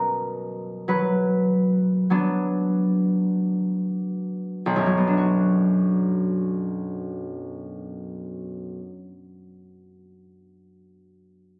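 Gentle and wistful, this brief classical excerpt features a solo concert harp in 4/4, played with a free, rubato feel. The harp sounds acoustic and warm, its fingerpicked notes ringing out up front across a span from B1 to B4. The piece rests on a B minor chord from the start, and the opening passage slows as it unfolds before a second passage begins at 4.7 seconds. The harp's final note falls at 9.3 seconds. The sound carries a moderate reverb with a club-like ambience and some compression, like a phone recording made in the room.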